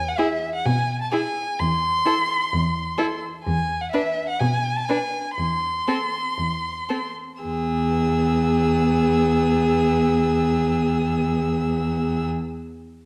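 A quick, spirited and graceful classical-period string quartet movement, heard in a brief cut from a longer piece, in which a vibrato-laden first violin carries the high melody with expressive portamento over a cello bass that slides just as expressively, while a smooth, even second violin line and a rich, focused viola fill the middle, the pace breathing freely and easing back between 2.5 and 7.4 seconds within a reverberant recital hall.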